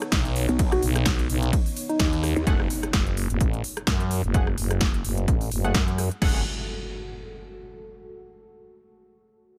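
A swung 4/4 groove is driven by a punchy electronic kick and a big-room dance kit of crisp hi-hat, snare, ride, rim click and crash, both given a small-room character. This swaggering, bouncy bass house passage, cut from a longer piece, opens on a drop, with a thick FM bass growling up front and sidechain pumping alongside a deep, moody pad that sits in the background with its own reverb. From 0.5 to 2.5 seconds a second, aggressive growl bass joins, wobbling and saturated through chorus and overdrive. Over it, a round, keys-like FM lead with vibrato, phaser and tape echo plays a short line starting at 0.7 seconds. At 2.5 seconds the harmony shifts, an electronic impact hits, and a nasal, band-passed sawtooth chord stab enters with chorus and tape echo while filter sweeps move over both the stab and the FM bass. Apart from the pad, the mix is largely dry.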